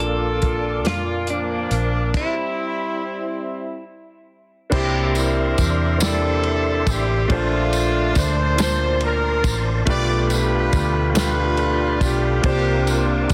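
A clear, roomy horn section carries the melody up front in this soulful, hopeful slow gospel passage at 47 BPM in 6/8, joined by a twangy clean electric guitar with phaser and tape echo that drops out at 3.8 seconds, a polished, long-sustaining baby grand piano, a lightly overdriven tonewheel organ with slow rotary speaker and key click sitting in the background, a round, punchy hollow-body fingered bass, a dry, muffled soul drum kit with dark cymbals and a tight kick, and a jingly, distant tambourine arriving at 5.2 seconds, set in light reverb and a dense modern master as the music moves from Bb to a stop on C before opening into lush ninth chords.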